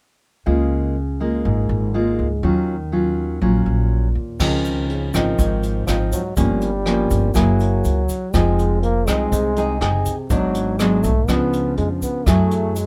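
Bossa nova at 122 BPM in Db major, breezy and romantic, opens with a fingerpicked, classical-style nylon-string guitar and a woody pizzicato upright bass, both up front, moving through Db6 and Ebm9. At 4.4 seconds a mellow, breathy trombone enters with scooped, jazz-style notes, joined by a distant, roomy brush kit with dark cymbals and a boomy kick, plus a grainy, bright egg shaker in the background. The chords pass through Gm7b5, Gb9 and Db7b9 to land on Gbm9 as this section of a longer piece cuts off at 12.9 seconds, all with little reverb.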